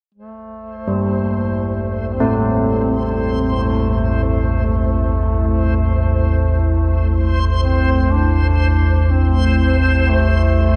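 Heard through a moderate plate reverb in an echo-heavy mix, this ominous, vast dark ambient drone sits on a single A minor chord at 60 BPM in 4/4, cut from a longer piece. A deep, rumbling drone, detuned and wave-folded with a slow attack and long release, sits up front from 1.5 seconds with its own reverb, subtle chorus and a filter sweep. A mellow duduk fades in from 0.1 seconds to carry the melody in a folk style, with vibrato and scooped notes, its vintage tone trailed by dub echo. Reversed, dreamy swells of granular texture rise on a high held note from 0.7 seconds, while bronze carillon bells with an iron clapper ring out dark, smooth arpeggios through dub echo from 0.9 seconds until 8.2 seconds. Behind them, a sweeping, resonant pad fades in with bright, full-bodied sustained chords, colored by ring modulation, filter swells and chorus.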